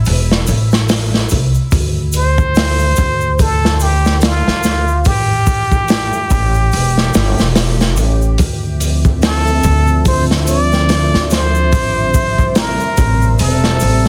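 A plunger-muted trumpet with wah-wah vibrato and tape echo leads this melancholic, smoky trip hop excerpt over thumpy, woody pizzicato upright bass, a gritty, saturated breakbeat kit with tight kick and rolled-off top, and a close, dry tube shaker in the background, while a warbling, detuned lo-fi pad drifts in at 8.7 seconds, all in a small room with a heavily compressed radio sound.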